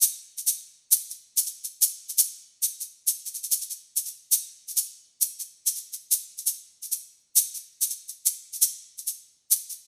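West African traditional in a joyful, warm 12/8 at 112 BPM with a straight feel, this short cut from a longer piece features a lone egg shaker, grainy and bright, sitting close, dry and up front from 0.0 to 9.7 seconds within a light reverb.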